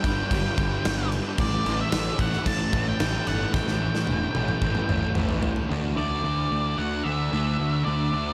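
Wistful and dreamy, this short excerpt of shoegaze-leaning rock moves at 112 BPM in a straight 4/4, its whole mix soaked in a huge ambient reverb with a long 7.8-second tail. A double-tracked fuzz guitar plays the riff up front, dark and distorted with an analog chorus, while an octave-fuzz lead guitar carries the melody between D5 and A5 through distortion and analog delay. Underneath, a picked electric bass adds an overdriven, fuzzy low end. A big acoustic rock kit with a punchy kick, medium-tuned snare, toms and crash cymbal sits up front, rolling into a drum fill from 3.5 seconds before dropping out at 5.7 seconds. From there the guitars and bass carry on alone, with the harmony moving from G5 to A5 and settling on D5 as the new section begins.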